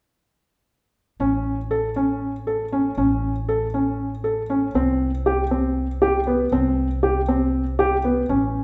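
Contemporary chamber music in a restless, shimmering 7/8, cut from a longer piece, where a felt-muted upright piano plays intimate, boxy arpeggios with audible action noise up front, and a woody, thumpy pizzicato upright bass on gut strings plays alongside it from 1.2 to 8.6 seconds, both set in the wet reverb of a church or concert hall.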